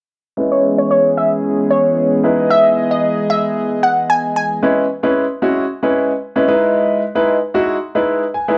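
A cassette-tape haze and a short, wet reverb give this brief pop excerpt the intimate feel of a home recording. The mood is confident and driving in a straight four-beat pulse. A present grand piano carries the accompaniment from start to finish, while a smooth, detuned sawtooth pad with a slow attack and chorus holds mellow sustained chords through the first half. Over them, a glassy, crystalline wavetable pluck plays the melody with a fast attack, a noise layer and chorus, and it falls away around 4.5 seconds. A filter sweep runs across the opening section. The second section leaves the piano alone, and it closes with a piano fill from 8.1 seconds.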